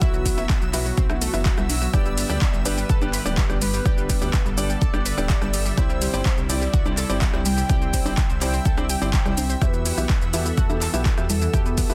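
Driving yet dreamy, this progressive house excerpt in E minor moves at 125 BPM in a straight 4/4, with chords shifting from Bsus4 through G and Cadd9 to Emadd9. An overdriven electronic kick sits up front beside a deep house kit of metallic hats, handclaps and shaker, while tape-warm rim clicks and congas join in the background at 1.1 seconds, and a dark, rumbling detuned saw bass with tube saturation pumps underneath. A velvety synth lead with vibrato, chorus and tape echo carries the melody over a lush, airy unison pad, a round, warbling analog pluck playing arpeggios, soft felt-muted upright piano stabs with audible action noise, and a reversed, granular swelling texture, set in digital ambience and a dense, heavily limited master.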